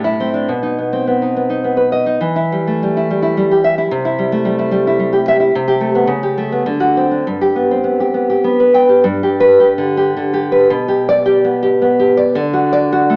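A nylon-string guitar plays alone throughout this short excerpt, a romantic classical solo in 3/4 that moves with rubato at roughly 99-112 BPM. Its tone is dark and deep, fingerpicked and up front, with finger squeak audible on the strings, giving the performance an intimate, passionate character. The harmony opens in minor around Am, B and Em, then passes through C, Am7/C, A7/C# and D7 before settling into G major from 5.5 s. A second section begins at 9.0 s, moving through G/B to a D chord as the clip cuts off at 13.2 s, clearly lifted from a longer piece. The guitar sits in a moderate recital hall reverb, but the sound is filtered through worn, warbling old cassette tape with drifting pitch and a small-speaker character.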